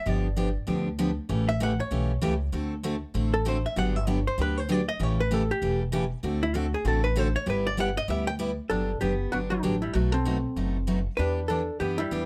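Lightly reverberant and up front, this cheerful, playful western swing cut in G major bounces along at 194 BPM with a swung feel. A dark, clean, compressed hollow-body electric guitar takes a solo from 0.0 to 8.7 seconds, over a bright, full-bodied steel-string acoustic guitar picked with audible finger squeak and a woody, growly pizzicato upright bass, as the chords move from G7 through A7 and D7 before turning to B7 and Em7 near the end.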